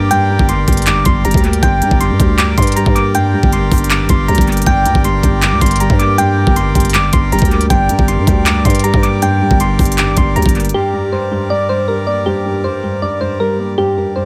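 Soft, round electric-piano-like synth keys carry the melody over a dark, boxy concert grand piano, both trailing dub echo, while a reedy accordion holds sustained chords and a growling 808-style bass rumbles beneath in G minor. A knocking, overdriven trap kit of crisp hi-hats, handclaps and kick sits up front at 158 BPM in a half-time feel, giving this menacing, melancholic hip hop cut an echo-heavy sheen with light digital ambience. At 10.7 seconds the drums and bass drop out, leaving the chorused keys, piano and accordion to carry on until 14.3 seconds.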